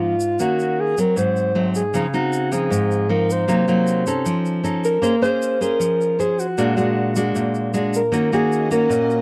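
A breathy, dark alto saxophone with light vibrato and scooped notes carries the melody over fingerpicked nylon-string guitar with audible finger squeak and a grainy shaker in this relaxed, sunny bossa nova fragment, cut from a longer piece, with a dry, close 1970s-style studio sound and light reverb, before lush bowed strings enter softly in the background at 8.1 seconds.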